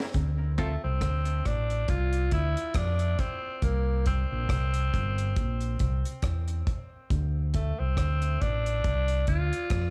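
A slow 69 BPM groove in 4/4, swung on the sixteenths, sets a deep, heavy dub reggae mood in D minor, in a short excerpt cut from a longer piece. A dry, acoustic drum kit sits up front, with a high-tuned snare, a tight kick, rim clicks and hi-hat carrying the beat throughout. A dark, round fingered electric bass enters at 0.2 seconds and sits equally forward, its amped tone anchoring the Dm7 to C7 and back to Dm7 movement. A bright, twangy clean electric guitar, picked and compressed with tremolo and dub echo, sounds only briefly at the start and is gone by 0.7 seconds. From 0.6 seconds a raspy, gritty tenor saxophone takes the lead with a punchy, vintage, pop-style solo line wrapped in dub echo, all set in a small studio room ambience.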